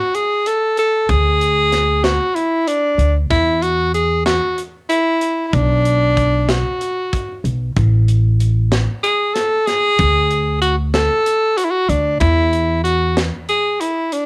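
Driving and brooding, this progressive instrumental passage moves in an uneven 7/8 with a straight feel. A clear, jazz-style tenor saxophone carries the melody up front from the very start, its subtone voice set in a plate reverb. An upright bass joins at 1.1 seconds, plucked on steel strings with a woody, thumpy tone, and falls away at 13.3 seconds. A tight metal drum kit of hi-hat, kick and medium-tuned snare sits mid-forward in a studio room, its rolled-off top coloured by cassette tape. The harmony passes through A5, Esus2, Bm and D5, and the piece has the feel of a home cassette recording with light reverb.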